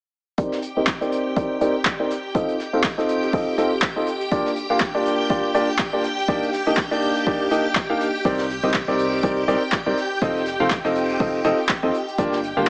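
A clear, worn concert grand piano riff with deep bass, sidechain pumping, dub echo and a filter sweep leads this bittersweet, soulful piano house excerpt at 122 BPM in C dorian, over shimmering vintage string-machine violin chords, a punchy tape-warm electronic kick, up-front analog handclaps, a very quiet dark brush kit on hi-hat and snare, and a round, dark FM bass entering at 8.2 s, all moving through Cm9, F7, Gm7 and Ebmaj7 with light reverb and a small-speaker sound.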